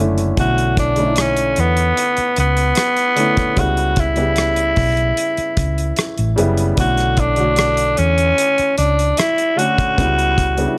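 Silky and bittersweet, this short excerpt cut from a longer piece sits in lush 1970s-style soul at an unhurried 75 BPM in B minor, with a straight 4/4 feel. A raspy tenor saxophone carries the melody up front from 0.4 seconds, its gritty, vintage tone staying between B3 and F#4 in a pop-style solo voice. Underneath, a grand piano supplies polished, present accompaniment, while a hollow-body short-scale electric bass, fingered and amped, gives a dark, round low end from the first moment. A damped 70s drum kit enters at 0.2 seconds with hi-hat, rim click and a tight, dry kick. The harmony moves between Bm11 and C#m7b5, and the whole group sits in a small room ambience.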